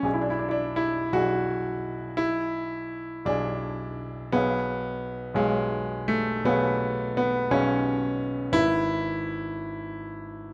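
Close, detailed microphones place a baby grand piano up front, its tone warm and natural with a short sustain, set in a moderate recital hall reverb that lingers around 1.4 seconds. This is a romantic classical nocturne for solo piano, tender and serene, cut from a longer piece and lasting about 10.5 seconds. The pulse moves in a slow 12/8 at roughly 54-60 dotted-quarter beats per minute, shaped by a flexible rubato feel. The piano spans a range from G#1 up to G#5, covering deep bass and the upper middle register. The harmony opens on G#m7b5 over B, shifts to C#7 over B at 4.4 seconds, and settles on E over G# at 8.6 seconds.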